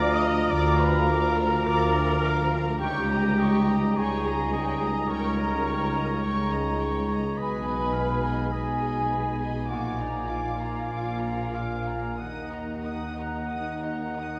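Yearning and melancholic, this slow romantic movement for symphony orchestra moves at 44-54 BPM in 4/4 with a rubato feel, a 14.4-second passage cut from a longer piece. Muted violins carry the melody from Ab5 to Eb6, their con sordino tone veiled and dark with a soft attack and vibrato, while a second violin line sits in the background. A clear, punchy solo oboe and a hollow, pure flute section in the background add second lines, as muted violas give lush accompaniment and a mellow French horn section holds tight sustained chords. A clear trumpet section adds stabs, and muted cellos and double basses, the basses up front, anchor the bass with a bowed, lush depth. The harmony moves from Bb/D through Eb7/Db, Abm/Cb and Bb7 to settle on Ebm at 12.2 seconds, all bathed in a wet scoring-stage reverb.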